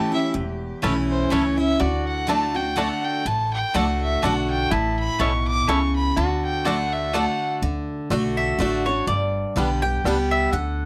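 Rustic and lively, this bluegrass excerpt swings along at 124 BPM in 3/4, set in D major. A rich, earthy fiddle carries the melody up front, bowed by one player with light vibrato, a nasal tone and a smooth top. Beneath it, a metallic lap resonator guitar, played with slide and fingerpicks, traces a second line. A bright, full-bodied dreadnought acoustic guitar, picked on fresh strings, sits up front as accompaniment, with a thumpy, woody upright bass played pizzicato. From 0.8 seconds a twangy, percussive banjo adds its own melody while a double-strung mandolin punctuates with stabs, and once the fiddle and resonator have fallen away by 7.6 seconds the mandolin takes a solo, as the harmony moves from A and D toward G, all captured through close, detailed microphones with light reverb.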